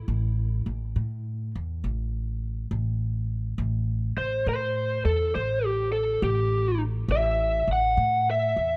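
Set in a slow, straight 12/8 feel, this soulful, gritty blues fragment is cut from a longer piece and opens with an upright bass alone. The bass is plucked pizzicato on steel strings, sounding woody and up front as it holds down the low end from the first moment through to 8.8 seconds. At 4.2 seconds a lead guitar enters through a small cranked amp, its picked electric tone dark and overdriven as it carries the melody in a middle-high register. The guitar sits up front alongside the bass, slightly louder in the balance. A small room ambience surrounds the pair, giving the whole thing the rough, unpolished character of a home demo.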